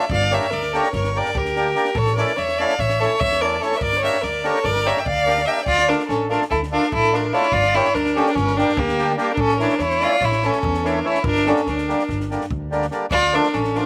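A bright, nasal fiddle leads this short Balkan wedding-band excerpt in 9/8, carrying the melody up front with an earthy tone that still sounds a little distant. Beside it, a dark violin plays a second line with vibrato, portamento and a soft, expressive attack that gives its upper notes a smooth finish. A reedy, full accordion fills out the middle with rich accompaniment. A compact cocktail drum kit sits in the background, its punchy kick and high-tuned snare kept dry, while a woody pizzicato upright bass with steel strings anchors the low end. The mood is bittersweet and restless, the playing heard outdoors with little reverb, as the same section passes twice before the excerpt cuts off at 13.9 seconds.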